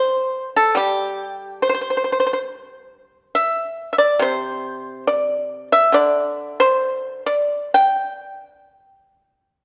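Flowing and elegant, this short fragment of Chinese traditional music features a solo pipa in the G zhi mode, moving freely in rubato around 62-71 BPM in 4/4. The pipa is played with fingerpicks and sits up front, its dry, percussive attack ranging from C3 to G5 across the full 9.6 seconds. A moderate scoring-stage reverb lends the performance a sense of space.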